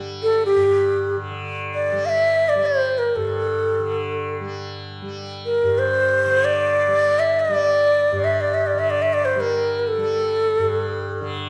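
Solemn and longing, this short excerpt of Hindustani classical music in free time sets a breathy, hollow bamboo bansuri up front, singing raga Kafi on G with vibrato and tongued notes, over a soft, buzzing, shimmering tanpura drone that sounds from the start to 11.5 seconds, all carried by the moderate reverb of a church or concert hall.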